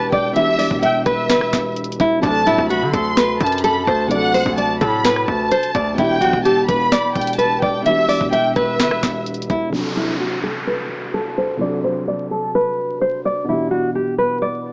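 Trap hip hop at 128 BPM in a half-time feel, menacing and melancholic, where a bright, fingerpicked nylon-string guitar carries the melody over a muffled, felt-muted upright piano with audible action noise, while a rich, vibrato-laden violin section with tape echo holds a high second line and a saturated, distorted 808-style bass and knocking trap drums drive the groove until about 9.7 seconds, when a downlifter and a filter sweep arrive beneath the continuing guitar and piano amid vinyl crackle and small-speaker sound.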